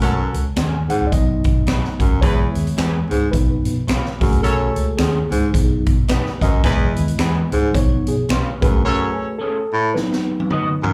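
A joyful, uplifting slice of swinging 1960s-style soul, heard live through a club's PA, opens with a reedy electric piano soloing with fast tremolo over a mellow, up-front baritone saxophone riff, a punchy horn section with light vibrato, a dark, round, foam-muted bass and a big-band kit with a high-tuned snare, while a twangy, slightly broken-up guitar adds stabs and finger snaps sit in the background from 0.6 seconds, slapback echo touching the horns, piano, sax and guitar, until a drum fill at 10.0 seconds.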